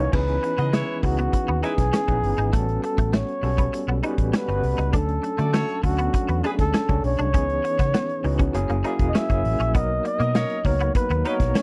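A breathy, intimate flugelhorn carries the melody up front with vibrato and a slapback echo, over a gritty, barky tine electric piano with fast tremolo and lush chorus, a bright, picked clean guitar riff with ensemble chorus, and a round, foam-muted fingered bass. This excerpt is polished 1980s jazz-funk pop with an urban, glossy mood, in straight 4/4 at 100 BPM, moving through C#m9, A13, Dmaj7, F#9 and Bmaj7. A tight, dark studio drum kit with crash, hi-hat, kick and snare sits close in the dry mix, while a distant, roomy horn section adds short second lines at 0.6, 5.4 and 10.2 seconds.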